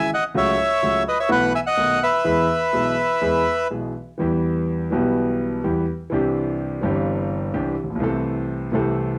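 A reedy, dark bandoneon carries the melody up front from the start, with a smooth, deep-bassed grand piano accompanying beneath it in this playful, passionate tango excerpt at 126 BPM with a rubato feel in 4/4. The close-miked bandoneon drops out at 3.7 seconds. The piano, with its vintage cassette-tape color and plate reverb, carries on alone as the harmony turns from E major to E minor at 4.2 seconds, and the short, wet room gives the home recording an intimate sheen.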